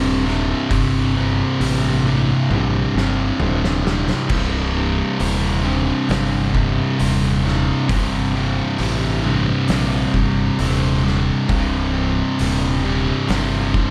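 Three picked guitars open together on a slow C minor riff at 67 BPM: a warm, double-tracked, overdriven guitar plays alongside two dark fuzz guitars churning in the background, all under an up-front, bright, overdriven fingered bass that growls down to C1. At 0.3 s an oversized low-tuned acoustic drum kit joins with a punchy kick, medium-tuned snare, toms, hi-hat and dark cymbals, its gritty, saturated sound rolled off at the top, and it plays a fill from 2.5 to 4.3 s. The mood is heavy and sludgy stoner-doom metal in a straight 4/4, held on a single C minor chord with light small-room reverb, and this short section is cut from a longer piece.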